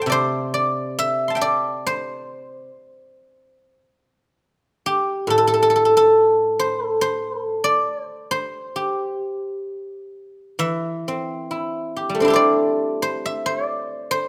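A solo guzheng played with fingerpicks rings out from the start, silvery and up front, unfolding an elegant, serene line in the G zhi mode across a range from A2 to C6. This is traditional Chinese plucked-string music, taken from a longer piece, at a slow 68 BPM in 4/4 with uneven, rubato beats, and a new section begins at 10.6 seconds. Close, detailed microphones and light reverb keep the acoustic instrument intimate and clear.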